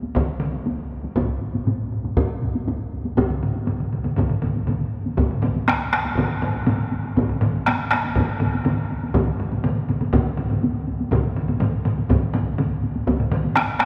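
A long, wet cathedral reverb surrounds this short cut from a longer Japanese traditional taiko piece, captured in a church or concert hall. Four taiko ensemble parts carry the percussion in a straight 4/4, with a driving, ceremonial mood and a pulse that keeps speeding up from start to finish. Two of the groups strike with heavy sticks and sit in a small-room acoustic, while a third, on hard sticks, sounds compressed and saturated and stands up front. A fourth group, also on hard sticks and close in the mix, brings a live-room ambience and enters at 1.2 s. Around 5.2 s the music moves into a new section that carries the ensemble through to the end.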